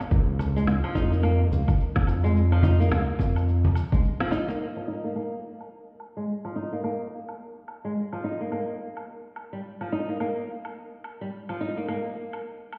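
Swung sixteenths give this earthy, hypnotic slice of organic downtempo a loose, rolling feel. A punchy, layered electronic kick and a smooth, sawtooth-and-triangle synth bass sit up front, while a compressed, saturated cajon with faint snares and soft hands stays in the background, and a filtered electronic woodblock, cabasa and woody snare drum ticks along underneath. A fingerpicked flamenco guitar enters at 0.6 seconds with acoustic arpeggios, colored by a low-pass filter and tape echo. The kick and bass drop out at 4.0 seconds for a brief break, and from 4.6 seconds the cajon falls away, leaving the guitar and the woodblock, cabasa and snare drum under filter sweeps. The whole mix sounds muffled, as if heard through a wall, with a stone-room reverb that lends it a hushed atmosphere.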